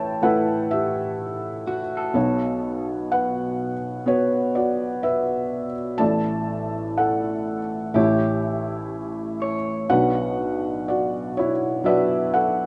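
A felt-muted upright piano, soft and intimate with audible action noise up front, carries a tender, hopeful melody in this slow 62 BPM acoustic folk-pop ballad excerpt, joined at 1.7 seconds by twangy, slightly broken-up electric guitar arpeggios through a small old amp with harmonic tremolo, as the chords move from Asus2 through Asus4 and A to Bm in a lush hall reverb with a rough home-demo feel.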